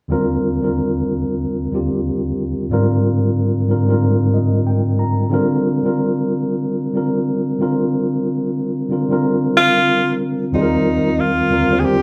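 A mellow tine electric piano opens this smooth, late-night R&B fragment at 92 BPM with a gentle swung 16th-note feel, sounding up front through its built-in speakers as it moves through Eb69, Abmaj7 and Bb69 chords and adds a fill from 4.0 to 5.3 seconds, before a breathy, punchy tenor saxophone enters at 9.6 seconds with scooped notes, vibrato and a smooth top in a jazz-style solo, the two heard together in the lush reverb of a large studio room where the band plays live.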